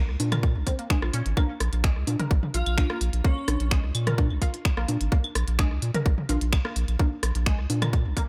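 A dry, close sound with little reverb frames this quirky, sparse minimal techno excerpt, cut from a longer piece and moving in a straight 4/4 pulse. A tight, overdriven electronic kick sits up front beside a deep, thick sub bass with a saturated triangle tone and sustained notes that pump against the sidechain. A squelchy, resonant blip pluck carries the riff, its square and sawtooth edges made juicy and evolving by phaser, ensemble chorus, delay and the same pumping. Clicky, overdriven hats and finger snaps from a minimal click kit mingle with a layered garage kit of claves, congas, rim click and toms, the latter trailed by delay, both kits sounding re-recorded in a small room. Between 2.5 and 3.7 seconds, an airy, dreamy lead briefly appears, its soft unison sine tone and noise layer shimmering with chorus, phaser and vibrato.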